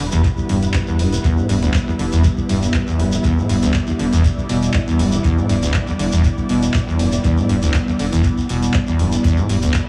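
Acid house with a raw, trippy mood, cut from a longer piece and held on a single E minor chord throughout. A squelchy, resonant sawtooth acid bass riff sits up front with lush chorus, over a round sine sub bass and a vintage string machine whose slow-attack ensemble chords breathe with sidechain pumping. A deep, dry electronic kick and a booming analog drum machine with handclaps and metallic hats drive the groove, while a grainy shekere adds texture, and dub echo, spring reverb and small room ambience give the mix its echo-heavy character.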